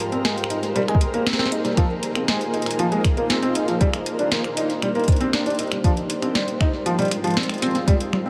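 A light reverb surrounds this glitchy, wistful IDM fragment at 118 BPM, where a blurred, detuned granular cloud pad with 12-bit sampler grit holds sustained chords from Abmaj9 through Bb9sus4 and Cm9 to Fm9, a very quiet flickering grainy texture hovers on Bb4, a felt-muted upright piano plays intimate, delayed arpeggios up front, a booming analog drum machine brings dry congas, finger snaps, metallic hats and a crisp snare, and a soft electronic kick enters at 0.9 seconds and drops out between 6.9 and 7.9 seconds.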